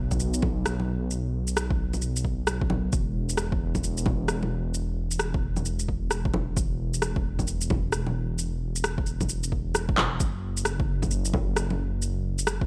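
A menacing, detuned sawtooth bass with a saturated filter swell and sidechain pumping opens this nocturnal, ghostly future garage fragment, joined almost at once by a punchy electronic kick and up-front layered electronic bongos, shaker, rim click and handclaps, both drum parts overdriven and set in studio ambience, riding a swung sixteenth feel in a dry mix until a drum fill arrives at 10.0 seconds.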